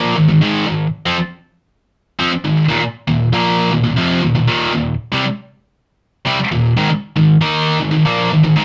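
A high-gain distorted electric guitar carries this short rock excerpt entirely on its own, playing from 0.0 to 8.6 seconds with a bright, picked, double-tracked tone placed up front. The mood is heavy and aggressive, moving at 118 BPM in a straight 4/4 feel. The guitar works through power chords, starting on Ab5, shifting to Eb5 at 2.7 seconds and returning to Ab5 at 6.8 seconds, all within a range from Eb2 to Eb4. A light reverb surrounds the part, and the rough rehearsal-room sound gives the snippet, cut from a longer piece, a raw, unpolished edge.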